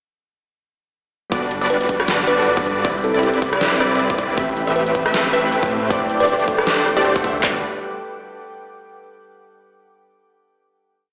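This is a complete future bass piece at half-time feel with a light swing, lush and playful, opening straight into a drop at 1.3 seconds that runs until 7.4 seconds before a final chord rings out to the end. Huge, bright supersaw chords sit up front, throbbing in a dotted rhythm with sidechain pumping, while a very quiet unison pluck doubles them. Underneath, a thick, dark detuned saw bass with chorus and tube saturation follows the chord rhythm, and glassy, wave-folded digital keys in the background hold rootless chords with syncopated pushes through chorus, pumping and digital delay. A soft, breathy pad hums very quietly beneath, and from 1.6 seconds a buzzing, woody kalimba plays short answering phrases carrying the melody through pumping and delay. The overdriven dubstep kit lands a punchy half-time kick and claps alongside a deep snare, rim clicks and metallic hats with rolls, all sounding re-recorded in a small room, and the whole mix carries a lush hall reverb and a boxy AM radio colour.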